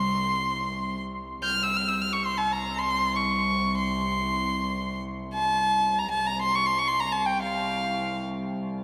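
Turkish makam ensemble music in free time, set in C makam hicaz and tuned to A4 = 440 Hz, this short passage is cut from a longer piece and carries a warm, passionate mood. A single bowed violin carries the melody up front, its tone clear, smooth and even, with vibrato and a close presence, ranging from F5 to G6. Beneath it, a symphonic cello section sustains a drone on C2, bowed with vibrato and sounding dark, woody and lush from a distance. The violin stops at 8.2 seconds, leaving the cellos to sound alone until 8.8 seconds. Heavy cathedral reverb with a 5.5-second decay fills the space, giving the sense of a church or concert hall.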